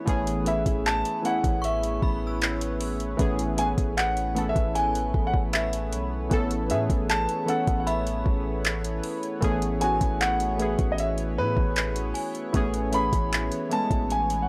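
A clear concert grand piano carries the melody from 0.5 s, its notes short in sustain, over a dreamy, romantic slice of contemporary R&B at 77 BPM in A major, resting on a single Amaj9 chord. Up-front analog keys with round sawtooth tone, chorus and tremolo sit beside a smooth electronic drum kit of soft kick, metallic hats and handclaps, while a deep, mellow 808-style bass holds long sine notes underneath. A shimmering, detuned pulse-width pad sustains the chords, and a bright, inharmonic FM chime glints in the background through ensemble chorus, phaser and analog delay, all framed by digital ambience and a dry, gritty recording.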